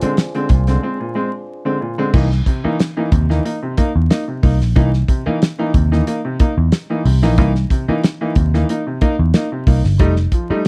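Funk at 92 BPM with a gritty, funky mood, this short cut opens on a French horn section holding smooth, lightly vibrato chords in the background over a Bb9, dropping out at 2.1 seconds after a break that begins at 0.8 seconds. From the very start a worn, woody upright piano, slightly detuned, keeps up its stabs through C7#9 and on to F9, while a dark, round, foam-muted picked electric bass sits up front beside a damped 70s drum kit with a fat snare, tight kick, dark cymbals and a rolled-off top. The sound is a dry, close 1970s-style studio recording in a small room, with vinyl crackle throughout.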